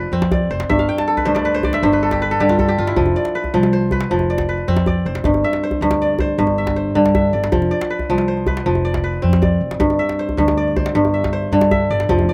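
West African traditional string and xylophone music in a joyful 12/8 at 105 BPM, this excerpt features an up-front, fingerpicked kora spinning ringing, crisp arpeggios with a slapback echo and a fill between 0.7 and 3.0 seconds, over a woody pizzicato upright bass and a tight, cracking djembe played with soft hands, as the harmony alternates between F5 and G5 in a dry, outdoor sound.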